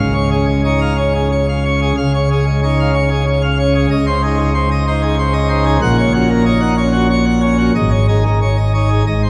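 Classical organ toccata in D-flat major, brilliant and majestic, moving at 92 BPM in a straight 3/4. A solo pipe organ on full plenum with mixtures spans Ab1 to Gb5, its baroque voicing bright with audible chiff, as the harmony moves from Db through Ab/Db and Gb/Bb to an Absus4 at 7.8 seconds. A long, wet concert-hall reverb surrounds this brief fragment of a larger work, and the hall is heard from further back.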